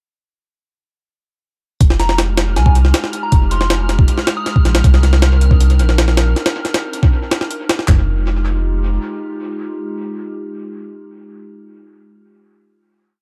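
A dry, echo-heavy mix carries this short, nostalgic and atmospheric drum and bass piece in F dorian at 158 BPM, built on a gritty, pitched-up jungle kit with a thumpy kick, a high-tuned snare and a heavily chopped breakbeat under dub echo, beside a deep, round sub bass of long gliding notes. A warbling, detuned tape-like pad holds dark Fm9 and Cm9 chords, while a pure FM bell adds short, mellow phrases with 12-bit grit and an airy, breathy noise layer sustains a high F6 in the background. The drums drop out at 8.0 s and the bass at 9.0 s, leaving the pad alone on a final Fm9 until 11.7 s.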